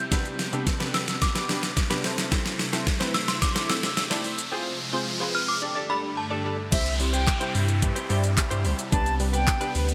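Dance-pop with a euphoric, upbeat mood, this excerpt from a longer piece opens with a build-up carrying a drum fill and a rising sweep from the background riser and downlifter. A vintage FM synth chime sings the melody in a ringing, warbling, inharmonic voice until 6.6 seconds, over a lush, detuned supersaw pad with phaser and sidechain pumping, crisp wavetable chord stabs that pluck and decay, and a clean, compressed electric guitar riff sitting in the background. The pop drum kit is up front and overdriven, with a knocking kick, deep snare, hi-hat, shaker, handclaps and crash cymbal bathed in gated reverb. At the drop at 6.7 seconds, an airy, reedy concert flute with vibrato takes over the melody with delay, while a round, sine-like sub bass pumps underneath. A moderate hall reverb and bright, 1980s-style digital production give the track a glossy sheen.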